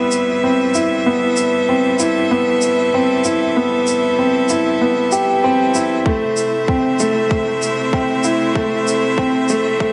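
Awash in a wet concert-hall reverb with a faint mains hum, this hopeful, tender piano-and-strings electronica build-up at 96 BPM in C major sets an up-front, vintage grand piano riff with digital delay over bright, vibrato-rich string quartet chords that pump with sidechain, a soft brushed shaker, and a tight, overdriven electronic kick arriving at 6.1 seconds as the harmony shifts from Cmaj7 to Am/C.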